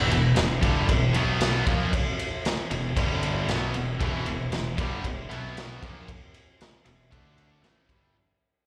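A raw garage drum kit sits up front in this driving, heavy hard rock excerpt, its punchy kick, medium-tuned snare and dark ride cymbal saturated and gritty in a small, pumping room with a rolled-off top. Beneath it, a fingered electric bass growls with overdriven fuzz, punchy and direct, holding the low end at a straight 116 BPM in 4/4. Two tight, bright distorted guitars pick out the riff together in the background, one carrying a slapback echo. At 4.0 s, a third overdriven guitar, double-tracked and very quiet, joins the riff. The progression moves through Em, B5, E5, G5 and D5, and the whole passage fades out, heard as a live gig through the venue's PA with a recital hall's reverb around it.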